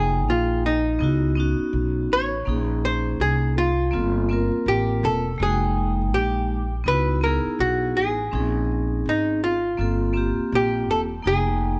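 An up-front archtop guitar, clean and hollow-bodied with a dark picked tone, carries the melody between Eb4 and Db5 in this mellow, smoky jazz-hop excerpt at 82 BPM in F minor, swung on the sixteenths. Beneath it, a woody, thumpy upright bass plucked on gut strings sits forward in the mix, while a bright, ringing vibraphone struck with hard mallets and its motor off supplies metallic accompaniment through a cycle of minor eleventh chords: Fm11, Dbm11, Bbm11 and Gm11. Light reverb, a small-room ambience and a layer of vinyl crackle frame all three parts through the full 11.8 seconds.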